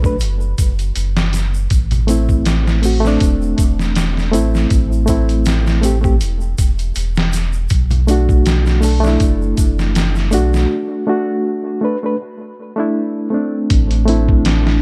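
Melancholic and dark, this trip hop cut from a longer piece moves at 80 BPM in A dorian with a lightly swung 16th feel, as a reedy, clean electric piano with harmonic tremolo and tape echo drifts over B5, Am and Bm7 chords above a deep, round sine sub bass. Compressed, pitched-down sampler drums give a gritty, thumpy kick and a medium-tuned snare up front, while a distant tube shaker and congas sit in the background until the break at 10.7 seconds. At 13.9 seconds a warbling, nostalgic lo-fi pad with chorus and built-in reverb slips in on a held D4, all within a dry, dark, warm production.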